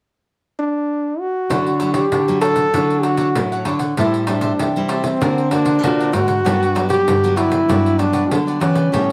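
A moderate studio reverb frames this joyful, sunny samba and choro fragment: a breathy, up-front trombone carries a vibrato-tinged jazz melody from 0.6 seconds, joined at 1.5 seconds by crisp, picked cavaquinho, a bright, full-bodied fingerpicked nylon-string guitar with finger squeak, a thumb-plucked nylon-string guitar bass, and a jingly, band-limited vintage pandeiro played with soft hands.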